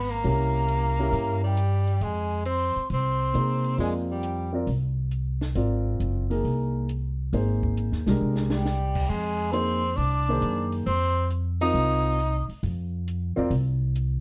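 Spiritual and hypnotic, this modal jazz excerpt in F dorian swings at 136 BPM in 4/4, with a breathy, hollow concert flute carrying the melody over an edgy, vibrato-laden tenor saxophone line, both falling silent at 4.5 s and returning at 8.5 s in the middle of a drum fill that begins at 8.2 s, while a woody, thumpy pizzicato upright bass sits up front, a dark grand piano provides accompaniment over chords moving from C7b9 to Fm7, and a compact cocktail kit with a dry, high-tuned snare, punchy kick, hi-hat and shadowy crash cymbal keeps time under light reverb in a warm production.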